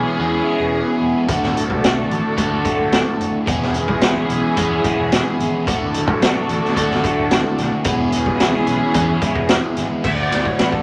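This trippy, kaleidoscopic psychedelic rock excerpt opens with a dark chamber string section holding soft-attacked, bowed chords played sul tasto with light vibrato, sitting close and up front beside a picked, double-tracked overdriven guitar riff coloured by phaser and a growling, punchy fingered bass with its own overdrive. At 110 BPM in a straight 4/4 and in D lydian, the harmony alternates between E6 and D before settling on D5. At 1.3 seconds a raw garage drum kit enters up front, saturated and gritty with a high-tuned snare, punchy kick and rolled-off top, using kick, snare, hi-hat, ride and crash, while very quiet, ringing congas sit close and dry beneath it. A drum fill at 9.6 seconds closes the section, and at 10.1 seconds a reedy, breathing pedal harmonium joins the other parts on a low D drone in the background. A moderate club reverb surrounds the mix.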